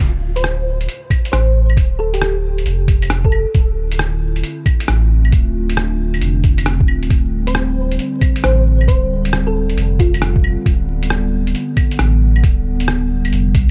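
A muffled, thumpy electronic kick sits up front in this melancholic, ghostly future garage excerpt. It enters at 1.1 seconds, pitched down and compressed as if re-recorded in a small room. Beneath it runs a deep, round sine sub bass that pumps against the sidechain throughout, alongside a lo-fi sampler-style kit of claves, hi-hat and rim click with a swung sixteenth-note feel. A gentle, tine-like thumb-piano-like synth pluck carries the melody in two short phrases, coloured by ensemble chorus and tape echo. From 3.9 seconds a warbling, nostalgic tape-like pad holds sustained chords with a slow attack and long release, softened by chorus and its own reverb and also pumping to the sidechain, as the harmony moves from Dm7 to Csus2/D within a dark, fairly dry production dusted with vinyl crackle.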